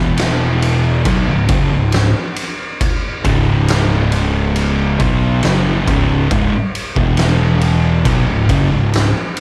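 A warm, dry production with little reverb carries this heavy, sludgy stoner and doom metal excerpt in C# minor, crawling at 69 BPM in a straight 4/4 as two thick fuzz guitars pick a distorted riff from the background over E5 and C#5 chords. Beneath them a fingered electric bass growls with bright, overdriven fuzz. From 0.2 seconds an oversized, low-tuned acoustic kit sits up front in a stone room, its boomy kick, fat snare and dark ride cymbal saturated and gritty with a rolled-off top.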